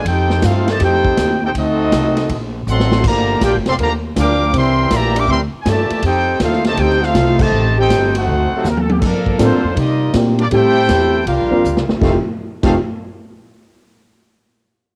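A clear, up-front trumpet section carries the melody with light vibrato, tinged by cassette tape and plate reverb, over a soft-attacked trombone section playing a second line in this joyful, energetic big band swing at 160 BPM in F major, cut from a longer piece. A woody, thumpy pizzicato upright bass on gut strings and a punchy, natural drum kit in a big room, also with a cassette tone, drive the swing, with a drum fill at 2.7 seconds and a band accent at 7.3 seconds. A dark, mellow upright piano joins at 9.4 seconds as the harmony moves through ninth and minor-seventh chords, all captured as a home cassette recording with light reverb.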